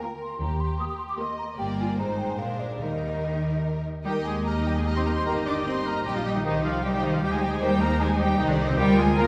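Quick classical-period orchestral music in triple time, graceful and spirited, with a flexible rubato feel, cut from a longer piece. Expressive bowed violins carry the melody while an airy, hollow flute and a second, lush violin section add upper lines over focused violas, with a dark double bass and smooth cellos entering at 0.4 seconds to anchor the harmony. At 4.1 seconds the second section brings in a clear oboe, a very quiet clarinet, a distant bassoon and soft sustained French horn chords, all set in the roomy reverb of a scoring stage heard from further back.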